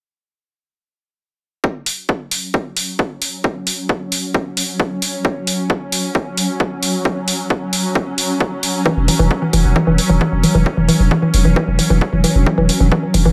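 An echo-heavy, lightly reverberant mix carries this relentless, industrial peak-time techno at 133 BPM, where an overdriven, up-front electronic kick drum arrives at 1.6 seconds and a hi-hat follows at 1.9 seconds, a swarming, detuned drone with pumping sidechain joins at 2.4 seconds, and at 8.9 seconds a woody, wave-folded pluck riff with chorus and tape echo arrives, joined at 9.0 seconds by a growling, buzzy 808-style bass under tube saturation, moving from F#5 to C#madd11/E.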